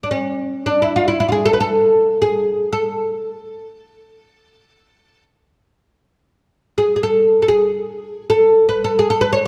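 Arabic maqam ensemble music in free time, this short cut from a longer piece in A maqam suznak, tuned to A4 = 443 Hz, offers a festive, warm mood carried by a solo fretless oud, plectrum-plucked on double strings and sounding woody, deep and up front from 0.0 to 9.4 s, set in a moderate recital-hall reverb within a dark production.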